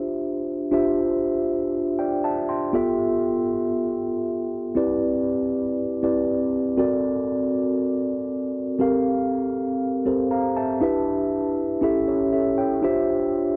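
Urban and slick, this pop excerpt in D minor moves at 119 BPM in a straight 4/4, with a mellow tine electric piano playing alone throughout its 13.6 seconds, moving through Dm11, G13, Cmaj9, D7b13, Gm11, Em7 and A7 before settling back on Dm11. The clean piano sits up front, heard through its built-in speakers with a subtle chorus and spanning B3 to C6. The close, dry 1970s-style studio sound carries a moderate booth ambience.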